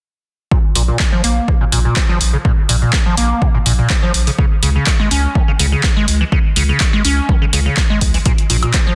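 A dense, heavily limited modern master with light reverb and digital ambience frames this driving, hypnotic acid house excerpt at 124 BPM in 4/4, set in Bb minor with tuning at A4 = 444 Hz. A squelchy, resonant square-wave acid bass carries the riff from 0.5 s, its bright filter sweep treated with phaser, overdrive, subtle chorus and dub echo, while an overdriven electronic kick sits up front. From 0.8 s a deep, thick sine sub bass adds saturated weight with sidechain pumping, and a punchy analog drum machine, overdriven and re-recorded in a large room, supplies handclaps, hi-hat and woodblock.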